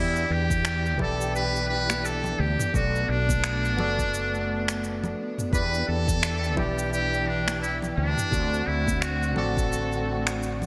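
A buzzy, distant muted trumpet carries a wistful melody with light vibrato and digital delay over a gritty, overdriven tine electric piano, lush bowed studio strings and a growly fretless bass with subtle chorus, moving through Em7, Bm7 and D7 in E minor. A relaxed sunset chillout groove at 86 BPM with swung 16ths builds as a tape-warm, gated-reverb deep house kit of cabasa, finger snaps and toms enters at 0.2 seconds, a deep electronic kick joins at 0.5 seconds, and close, dry congas slip in quietly at 1.0 seconds. Plate reverb and bright 1980s-style digital production give this short excerpt a polished, airy sheen.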